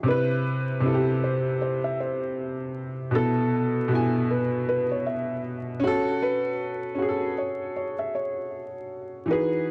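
A felt-muted upright piano carries a soft, intimate melody over a clear, woody, slightly detuned upright piano playing up-front accompaniment in this cosy, nostalgic hip hop excerpt at 78 BPM in 4/4 with a swung 16th-note feel, moving through Cmaj7, B7sus4 and A69/C# under light studio reverb, worn, warbling cassette tape and vinyl crackle.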